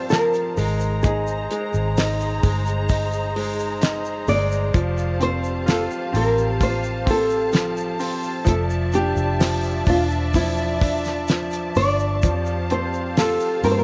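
A lightly reverberant mix opens this heartfelt, emotional pop ballad excerpt at a slow 64 BPM in F major, where a small, thumb-plucked nylon-string guitar carries the melody through tape echo over a brilliant, intimate grand piano with audible action noise, lush bowed strings with a woody, smooth top, a round, foam-muted vintage electric bass, a dry, damped 70s drum kit with a fat snare and tight kick, and a grainy egg shaker in the background, all moving through Fadd9, Abadd9 and Dmadd9 chords.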